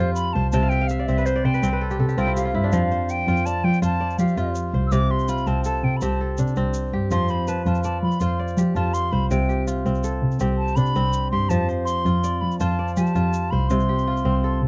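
A concert flute with a pure, hollow tone carries the melody from the opening moment, tongued and shaded with vibrato, while a crisp, ringing kora spins arpeggios beneath it and adds a fill between 0.5 and 2.7 seconds. This is West African traditional string music with a flowing, warm mood, moving at 109 beats per minute in a straight 12/8 in F Lydian. A bowed double bass sits up front with a rich, focused sound and its own vibrato, anchoring the low end around F and C. A grainy tube shaker enters at 0.2 seconds and keeps a light pulse close by until 14.2 seconds. The flute stays in the spotlight throughout this short fragment of a longer piece, captured in a dry, close studio sound with the intimate feel of a 1970s session.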